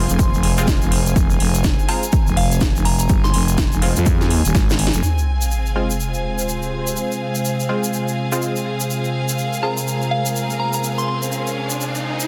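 Swung sixteenths at 124 BPM drive this gritty, bouncy bass house excerpt in F minor, where a punchy overdriven kick and a house kit with a cracking snare and metallic hats push a growling FM bass under a filter sweep, alongside nasal band-passed chord stabs with dub echo, a gentle, warbling synth bell melody, a grainy egg shaker and a smooth bowed string section, until a drum fill gives way at 5.0 seconds to an impact, a bright resonant pad with vintage 12-bit sampler grit, and an electronic sub drop and riser, the riser carrying from 9.9 seconds to the cut at 12.3 seconds, set in light reverb and a dense, heavily limited master.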